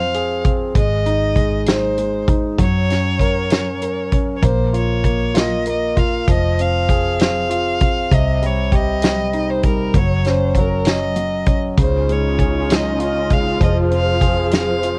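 A rich, vibrato-laden solo violin sings an aching melody over an intimate concert grand piano with audible action noise and a round, foam-muted electric bass in this melancholic F minor pop ballad in slow 6/8 at 66 BPM, alongside an acoustic country drum kit with a punchy kick and fat snare up front, the violin and drums both colored by cassette tape, until a dark, expressive studio string section with portamento adds sustained chords at 11.8 seconds, in a dry home cassette recording cut from a longer piece.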